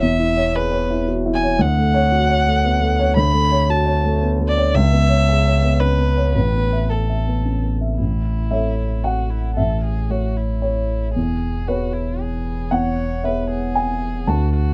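In a rubato 3/4 at 114 BPM, this hopeful, intimate neoclassical piece in A major drifts through E6, Dmaj7, C#m7 and Asus2 before settling on A at 8.0 seconds and returning to E6. A muted, con sordino violin, a single bowed player with veiled tone and vibrato, carries the melody up front, while a dark, boxy concert grand supplies mellow accompaniment with deep bass beneath it. A pure sine sub bass adds clean, smooth, sustained low end, all set in light reverb in this fragment cut from a longer work.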